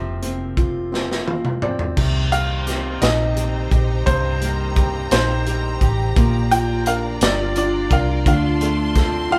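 Moving in a straight six-eight, this romantic, tender pop ballad excerpt sets a brilliant grand piano melody over woody upright piano accompaniment, full-bodied picked acoustic guitar arpeggios in the background and a round, foam-muted electric bass up front, while a tight-kicked acoustic drum kit with a pumping room sound and the upright piano both play a fill from 0.9 to 2.0 seconds before a lush, bowed string section with vibrato enters at 2.0 seconds, all in a moderately reverberant room.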